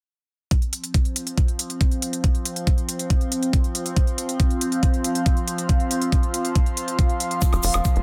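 A straight 4/4 psychedelic trance pulse at 139 BPM begins at 0.5 s, with a knocking, tape-warm electronic kick up front and smooth, overdriven electronic hi-hats and woodblock, all in light reverb over an F5 chord. An evolving, morphing wavetable pad holds sustained chords through chorus, phaser, built-in reverb and sidechain pumping, joined at 1.2 s by a soft, breathy, detuned pad with a noise layer that also pumps under chorus and phaser. Near the close of this intense, psychedelic fragment, a grainy, bright tube shaker sits in the background, and a tight, punchy, wave-folded sequencer bass with a saturated filter pluck drives in up front at 7.5 s.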